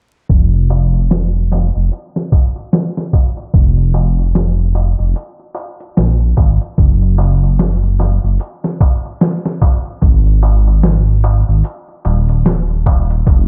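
Over a swung groove, this smoky, cinematic trip hop excerpt pairs a gritty, pitched-down, overdriven sampler-style drum kit with a thumpy kick and medium-tuned snare against a deep, rumbling detuned saw bass, both up front, while a crisp metal-shell darbuka played with soft hands sits quietly in a live room, all wrapped in dark digital ambience with vinyl crackle and a filter sweep running from 0.3 to 13.5 seconds.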